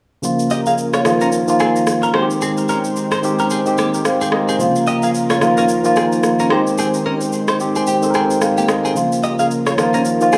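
A light reverb gives this smooth, hypnotic afrobeats passage, cut from a longer piece, a small-room feel at 110 BPM with a 16th-note swing. An up-front, clean tine electric piano carries the accompaniment through Bbm, Ebsus2 and Abmaj7 and adds a fill at 7.9 seconds, while a lush, detuned sawtooth pad with chorus warbles softly in the background and an overdriven electronic shaker and rim click keep the pulse. From 0.5 seconds a bright, compressed, direct-recorded electric guitar picks a scooped riff through phaser and digital delay.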